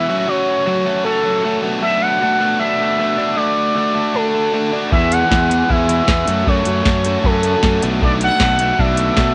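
A straight 4/4 pulse at 155 BPM drives this restless, bittersweet indie rock excerpt in B dorian, cut from a longer piece. From the start, an expressive sawtooth synth lead carries the melody up front, smooth and resonant with a soft attack, vibrato, a filter sweep, chorus and tape echo. Beneath it, a biting overdriven guitar and a bright, twangy twelve-string electric guitar with subtle chorus play riffs over chords moving from F#m through Bm7 and D to E. At 4.9 seconds a growly, punchy fuzz bass and a soft vintage rhythm box enter together, the drum machine's deep kick, crisp snare and metallic hats sitting up front with a small-room character. Light reverb and a rolled-off top end give the sound a slightly dusky, analog feel.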